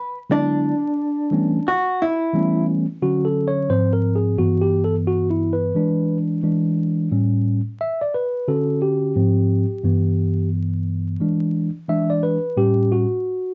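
A dark, warm production with a bed of vinyl crackle and a moderate small-room reverb sets a smooth, cool mood for this hip hop excerpt, cut from a longer piece. At 88 BPM in 4/4 with a swung sixteenth-note feel, a vintage hollow-body jazz guitar opens with a short melody between D4 and B4, its picked, compressed, clean electric tone sitting up front before it drops out at 2.7 s. A mellow tine electric piano comes in at 0.3 s, playing clean through its built-in speakers and spanning G2 to E5. From 3.0 s the electric piano carries on alone as a solo through 13.5 s, cycling through a jazzy progression of E7, A7, Dmaj7, G#6 and G6. The tuning sits slightly under standard pitch, adding to the aged, laid-back character.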